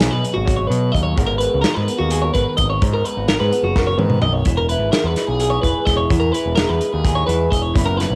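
This math rock and Midwest emo fragment, cut from a longer piece, feels playful and bright, moving at 256 BPM in eighths across a straight 7/8 metre, tuned to A4 = 439 Hz. A twelve-string electric guitar sits up front with clean, twangy, compressed arpeggios, while an electric guitar through a small old amp adds slightly broken-up accompaniment coloured by a phaser. A growling picked electric bass, overdriven and blending direct and amped tone, also sits forward in the mix. A loose indie drum kit with a medium-tuned snare, tight kick and rolled-off top plays in a small room through a cassette tape effect, and plays a fill from 3.8 to 4.5 seconds. The harmony moves from B69 to G#m9 and lands on Emaj7 at 4.5 seconds. The whole piece carries the dry, intimate character of a home cassette recording with little reverb.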